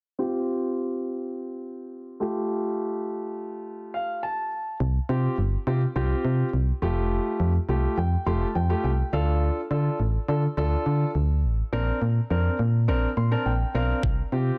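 This carefree, summery dance-pop excerpt opens at 0.2 seconds with an up-front, warm concert grand piano, its tone rich in the low register, playing accompaniment while a filter sweep runs through the opening passage. Moving at 104 BPM in a straight 4/4, the harmony rests on Csus4 and Fadd9 before a brief break with the chords dropping out. At 4.8 seconds a punchy, round FM bass arrives, dark and digital with a fast attack and decaying notes, and both it and the piano pump under sidechain compression. The progression then moves through Dm and Bbadd9, with the piano adding fills along the way. A layered, knocking electronic kick sounds briefly at 14.0 seconds as the harmony returns to Csus4. The mix carries light reverb and a low-pass filter, and the master is dense and heavily limited.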